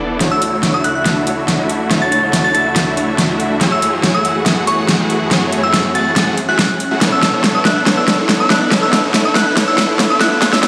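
Heard through a big sound system in a bare stone room with light reverb and a thin, high-passed edge, this dreamy, lush future bass fragment at 141 BPM in a half-time feel is one long build-up: huge, bright, detuned supersaw chords play an up-front riff under a filter sweep over Dmaj9, F#m9 and Bm11, while a glassy, crystalline synth bell carries a mellow, chorused melody with tape echo, an overdriven dance kit drives a drum fill with a huge snare and metallic hats, a dark, veiled con sordino string section sustains chords in the background, and a very quiet riser enters at 2.7 seconds.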